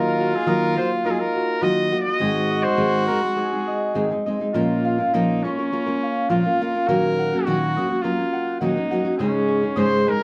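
Passionate and dramatic, this mariachi fragment at 104 BPM in 4/4 carries a clear, distant-sounding classical trumpet melody that drops out at 4.2 seconds and returns at 9.8, over a smooth-topped second trumpet line, a full-bodied fingerpicked nylon-string guitar up front and ringing concert harp arpeggios, with the band playing live together in one small, reverberant room.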